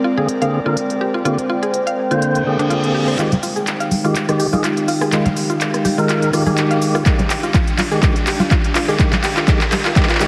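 Heavily compressed, radio-like sound with vinyl crackle and a lush hall reverb frames this smooth, deep house passage cut from a longer piece. An airy, breathy pad, a woody mallet-like pluck spinning arpeggios through tape echo, and a warbling, nostalgic lo-fi pad in the background pump against the sidechain from the start, joined almost at once by fat, lightly overdriven tonewheel organ stabs with key click through a fast rotary speaker, and an up-front kit of smooth hats, handclaps, rim click and shaker. A very quiet electronic reverse cymbal and riser arrive at 2.4 seconds and lead into a build-up at 3.2 seconds, where the harmony moves from Bb9 to Fm9, bright close congas and a drum fill enter, a filter sweeps an analog pad, and a round, barely audible bass sits underneath, before a punchy, layered electronic kick lands up front at 7.1 seconds.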